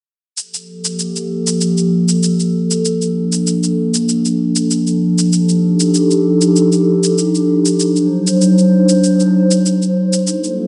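Warm and meditative, this organic downtempo excerpt drifts along at 97 BPM in 4/4 in G minor, with a light 16th-note swing and tuning set to A4 = 442 Hz. A warbling, tape-like pad sits up front from 0.8 seconds, holding dark, detuned, wave-folded chords with a slow attack and long release, colored by chorus and its own built-in reverb. An electronic shaker enters at 0.4 seconds and keeps time quietly beneath it, carrying a produced, tape-softened character. A filter sweep moves across the ambient pad through the whole passage as the harmony travels from Gm9 to Bbmaj7, Ebmaj9#11 and D7b9. The dreamy mix is soaked in a long plate reverb and rolled off at the top end, giving the sound a hazy, nostalgic vintage glow.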